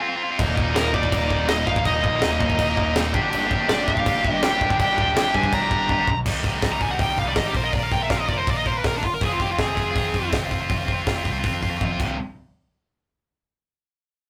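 Aggressive and relentless, this heavy metal excerpt in C minor drives at 163 BPM in a straight 4/4, cut from a longer piece. A bright, high-gain distorted guitar, double-tracked and up front, opens the riff alone before a modern studio drum kit joins it at 0.4 seconds. The kit has a punchy kick, a high-tuned snare and an airy, polished sound. A growling, overdriven picked bass and a crunchy, double-tracked rhythm guitar sitting in the background enter at the same moment. That second guitar drops out at 6.1 seconds, just as a drum fill leads into a high-gain lead guitar solo that runs to 12.2 seconds over chords moving from C minor through Bb5 and F minor. The lead guitar rides above the riff from early on, its picked lines reaching up to Bb5, and another drum fill closes the passage on a C5 power chord. The whole take carries a rough rehearsal-room character, with tube saturation and a moderate small-room reverb giving it a raw, close-quarters punch.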